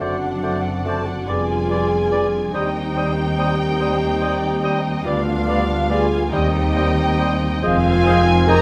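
In a rubato 6/8 metre, this solemn, yearning fragment from a slow romantic orchestral movement gives its melody to a veiled, con sordino violin section, while a second muted violin section, airy background flutes, a distant clarinet and a warm solo cor anglais weave second lines; a mellow bassoon and soft-edged violas accompany, a roomy French horn section and tight trombones hold sustained chords, a very quiet harp adds bright, ringing arpeggios, and dark bowed cellos and double basses carry the bass, all caught by close, detailed microphones in light reverb.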